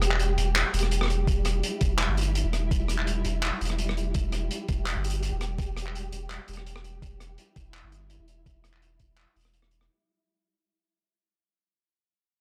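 A deep, thick saturated sub bass in E minor, a crunchy, gritty breakbeat kit of handclaps, hi-hat and rim click, and a flickering, grainy, detuned texture washed in its own reverb open this heavy, dark half-time drum and bass excerpt at 167 BPM, with a knocking electronic kick joining at 1.3 s over a single Em chord as the dry hardware sound fades out across its 9.9 seconds.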